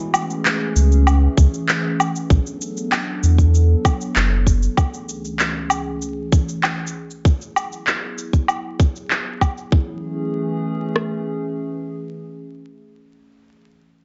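A faint vinyl crackle and a light reverb frame this short folktronica passage, and its top end is rolled off, giving it a soft, dusky sound. A warbling, detuned pad with a slow attack and long release holds sustained chords throughout, nostalgic and lo-fi, thickened by chorus and its own reverb while a filter sweep moves across it until 9.7 seconds. A round, deep sine sub bass sits up front at 0.8 seconds and stops at 4.7 seconds. Electronic woodblock, cabasa and handclaps sound tape-colored and muffled by low-pass filtering, joined by an organic electronic kit with a tight kick and rim click that carries on to 11.1 seconds. At a straight 97 BPM in A major, the delicate, warm mood drifts through Amaj7, Bm7 and Eadd9 before a brief closing section where the pad lingers as the kit plays out.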